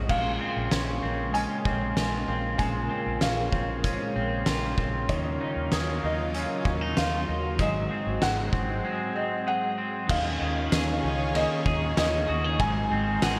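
A straight 4/4 pulse at 96 BPM drives this ethereal, hazy dream pop passage, cut from a longer piece, with an oversized low-tuned drum kit entering at 0.1 s, its punchy kick, fat snare, dark cymbals, hi-hat, ride and tambourine soaked in gated reverb and pushed up front with a gritty, saturated edge. Underneath, a vintage muted fingered electric bass holds a round, foam-muted low end, while a lush unison pad of detuned sawtooth and square waves sustains thick, slow-attack chords through chorus and phaser. A felt-muted upright piano carries the soft, intimate melody between Db5 and Ab5, trailed by digital delay. Two electric guitars fill the middle: one at the edge of break-up plays twangy, fingered arpeggios with subtle chorus and delay, and a clean semi-hollow guitar with tremolo sits in the background as accompaniment. A large celesta adds a delicate, bell-like shimmer from 1.3 s to 11.3 s at a very quiet level, as the harmony moves from Bbm9 through Ebm9 and Ab7 to an Eb7sus4 at 10.1 s, all bathed in a lush hall reverb and bright 1980s-style digital production.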